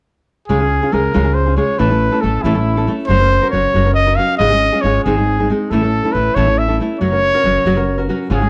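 A clear trumpet leads with a soft attack and light vibrato, singing a classical-style solo melody up front with plate reverb, in this proud, festive mariachi excerpt cut from a longer piece of Mexican folk music in 6/8 at 92 BPM (dotted quarters). Underneath, a full-bodied, fingerpicked nylon-string guitar in classical style sits up front, while a woody, dark upright bass played pizzicato on steel strings anchors the low end, all three parts playing from 0.5 to 8.5 seconds. The harmony moves through Db, A, Gb and Ab in a moderate studio room.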